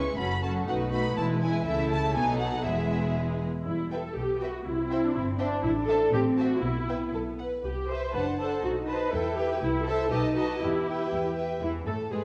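Spirited and cheerful, this brisk classical-period movement for string orchestra moves in a straight duple metre and is cut from a longer piece. The violin section carries the melody with a lush, expressive tone, soft attacks and vibrato, while a second violin section adds a smooth, even line beneath it. The viola section sits up front in the accompaniment, and cellos and double basses share the bass, the cellos warm and the basses close and rich. All five sections play bowed with vibrato throughout, and a new section begins at 3.7 s, with the harmony briefly dropping out around 5.6 s before closing on a major chord at 11.6 s. The strings sit in a reverberant recital hall, and the sound has the worn, warbling pitch drift of old cassette tape.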